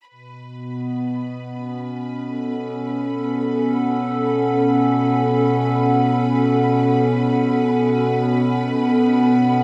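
A distant, bright violin section fades in at 0.1 s with vibrato-rich bowed texture before a warbling, nostalgic tape-like pad with chorus enters at 0.6 s, sustaining mellow chords up front in this luminous, free-time ambient passage cut from a longer piece and bathed in a huge 8.9-second reverb.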